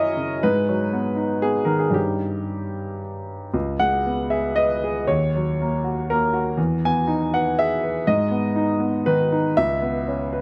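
Neoclassical minimalist piano in G# minor, this short excerpt cut from a longer piece moves at 120 BPM in 3/4 with a rubato feel, and its mood is intimate and reflective. A solo grand piano carries everything from 0.0 to 10.4 seconds, spanning C#2 to G#5 with a smooth, vintage tone that sits up front. Light reverb gives the sound a gentle sense of space. The harmony opens on G#m7 and D#7/G before a second section begins at 3.5 seconds on C#5, then passes through D#m7, Emaj7 and G#m before arriving at C#m7 at 9.6 seconds.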